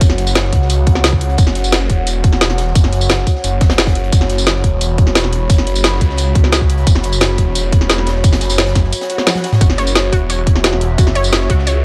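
A dry, dark and warm mix with little reverb frames this tense, mechanical slice of dark technical drum and bass, led by a tight, up-front electronic kick and a layered electronic kit of woody snare, metallic hats, tambourine and toms, with a very quiet, gritty, saturated breakbeat kit tucked beneath. A swirling, thick detuned saw bass with phaser, overdrive and sidechain pumping sits up front beside a deep, moody analog pad holding sustained chords through chorus and phaser. A background electronic swell appears at 9.0 seconds, joined by a drum fill at 9.3 seconds, and a round, bright analog pluck enters at 9.6 seconds with arpeggios treated with chorus and digital delay.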